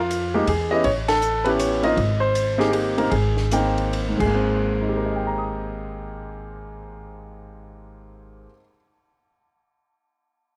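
A playful, swinging jazz piano trio fragment in 3/4 and Ab major, moving between 137 and 161 BPM with swung eighth notes, cut from a longer piece and set in light reverb. A clear, up-front concert grand carries the melody over Fm9, A9 and Abmaj9 chords, joined by a woody, thumpy pizzicato upright bass and a compact cocktail kit with dark cymbals, a high-tuned snare and a punchy kick. The band hits an accent at 1.0 seconds and slows down from 2.0 to 4.4 seconds, where the drums stop at 4.3 seconds and piano and bass carry on.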